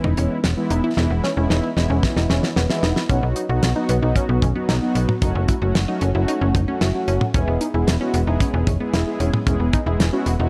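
A straight 4/4 groove at 113 BPM drives this wistful, bright synth-pop excerpt in E major, where a damped 70s drum kit with a fat snare and tight kick plays a fill from 1.0 to 3.1 s beside a snappy, metallic slap-like FM bass, while mellow synth brass, round and detuned with chorus and phaser, carries the chords from E through B and F#m7 back to E, and a lush unison pluck with a noise layer spins arpeggios through analog delay, all in a small room with light reverb on a dry, gritty hardware recording.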